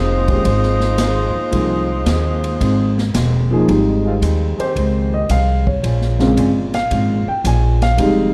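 A dark, lightly reverberant production frames this brassy, swinging big-band excerpt in F minor at 112 BPM, where a clear, vibrato-laden saxophone section carries the melody until 3.1 s over a woody, thumpy upright bass, a clean, compressed hollow-body archtop guitar in the background and a hall-toned drum kit with a boomy kick, before the natural-sounding baby grand piano takes a solo from 3.7 s, shaded by bright trombone section chords from 4.0 to 6.3 s as the harmony moves from Fm7 to Bbm7.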